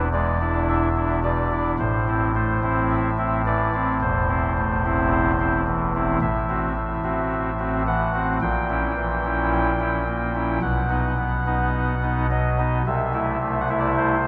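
Dark and grave, this classical chorale-style piece for pipe organ moves at a slow 54 BPM in 4/4 with a rubato feel, set in A minor and tuned to A4 = 442 Hz. A single chamber organ with a soft reed voice plays alone throughout the 14.3-second passage, which is cut from a longer piece, spanning a range from E1 up to G5. Its oboe solo stop has a reedy, nasal edge and a touch of chiff at the start of notes, while the tremulant lends a gentle waver and the chamber voicing keeps the sound intimate and up front. The harmony opens on E7 before settling onto Am at 1.8 seconds, then darkens through F#m7b5/A and A#dim7 to a B chord, coming to rest on Am/C at 12.9 seconds. A wet cathedral reverb with a long 4.9-second decay surrounds the instrument, letting each chord hang in a vast, shadowed space.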